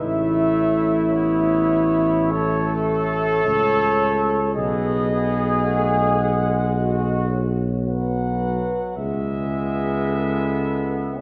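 Up front, a warm trombone section carries the accompaniment through this serene, lyrical brass band excerpt, a classical, hymn-like passage at a rubato 54 BPM in 4/4, tuned to A4 = 436 Hz. A distant, roomy cornet sings the melody with light vibrato over a mellow French horn section's soft second line, while a brilliant solo trombone sits further back and a dark tuba anchors the bass. The harmony moves from A to B at 4.6 seconds and C#m7 at 9.0 seconds, all bathed in a wet scoring-stage reverb heard from further back in the room.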